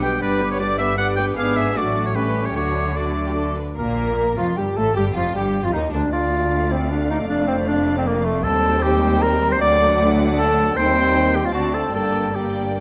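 This is a quick, spirited classical-period movement for symphony orchestra in triple time, graceful in character and shaped with a flexible rubato, cut from a longer piece. A violin section playing con sordino carries the melody with a dark, veiled, lush vibrato, while a second violin section, close yet set in the background, traces a supporting line beneath it. Among the woodwinds, an up-front clarinet with a warm, present tone is the most prominent of the second lines. A clear oboe plays alongside it only until 3.6 s, and an airy, hollow silver flute sings above with tongued notes throughout. A distant, roomy bassoon accompanies until 3.6 s alongside a very quiet, soft-edged viola section. Meanwhile a tight, smooth-topped French horn section sustains chords in the background, and shadowy cello and double bass sections anchor the bass. The harmony turns from major to minor at 3.8 s as a new section begins, and a moderate concert hall reverb gives the ensemble a spacious setting.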